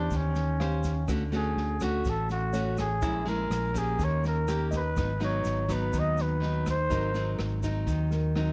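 A bucket-muted trumpet leads this sunny, breezy bossa nova fragment from the first moment, its veiled, raspy tone carrying vibrato, scooped notes and a growling jazz edge up front, with a bright, fingerpicked nylon-string guitar, a punchy, amped electric bass and a warm concert grand piano in the background. An acoustic jazz kit with a boomy kick, rim clicks and a dark, rolled-off top joins almost at once alongside a grainy, close tube shaker, all under light reverb. The trumpet drops out at 7.4 s while the guitar's finger squeaks and the rhythm section carry on over chords such as Dmaj7 and G#m7.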